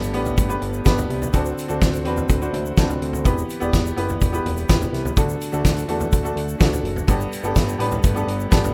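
Driving and dramatic, this short clip of piano-driven pop moves at 125 BPM in a straight 4/4, cycling through Gadd9, D7, Em and D before returning to Gadd9 at 7.1 seconds. A bright, woody upright piano sits up front with audible action noise and long sustain, carrying the accompaniment over a fat, nasal, saturated analog bass and a very quiet, dark analog pad whose slow-attack chords carry chorus and a sub octave. A loose indie drum kit with a fat snare, tight kick and roomy, distant character drives the groove alongside a grainy egg shaker in the background, all in a rough home demo mix with light reverb.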